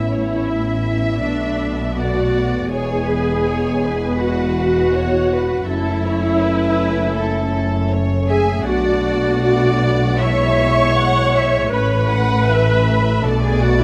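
A moderate scoring-stage reverb surrounds this short cut from a longer cinematic film score, giving the orchestra a soft halo of room around its muted strings. The mood is sorrowful and bittersweet, and the pulse breathes freely in rubato. Muted violins carry the veiled, con sordino melody high in their range over a second violin line. Up front, the dark violas hold the accompaniment with lush vibrato, while mellow French horns sustain chords beneath them. Bowed cellos sit in the background and a distant double bass section adds soft-attack depth, together anchoring the bass. The harmony drifts through Aadd9, Bm7, E and F#m7, returns to Bm7 at 8.7 seconds, then passes through E/B and Aadd9 to close on Bm7 at 13.2 seconds, with every part sounding throughout.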